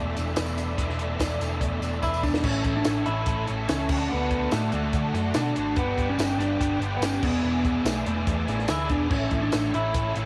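Jangly and carefree, this 144 BPM indie rock excerpt in A major sets a biting overdriven guitar riff with ensemble chorus and a second overdriven guitar riff with spring reverb in the background over a round, dark hollow-body bass, a dry compact cocktail drum kit with a punchy kick and high-tuned snare, a bright, band-limited tambourine and a smooth tonewheel organ on a slow rotary speaker, while a slightly broken-up, compressed guitar through a small old amp takes the melody at 2.0 s as a drum fill begins, as the chords move through Amaj7, Dmaj7 and Gmaj7 in a small-room home cassette recording.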